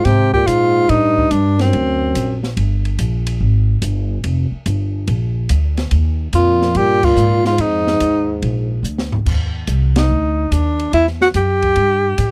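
A whispered tenor saxophone carries the melody up front in this relaxed, playful small-group swing excerpt, scooping into notes with vibrato and a soft attack, beside a mellow, distant trombone on a second line; both horns pause after the opening 2.4 seconds and return near 6.4 seconds. Underneath, a woody pizzicato upright bass sits forward throughout, while an open acoustic drum kit with dark cymbals, a high-tuned snare and a boomy kick carries the swing and adds a fill just before 9.3 seconds. The sound is dry and close in a 1970s studio style, with band accents punctuating the phrases.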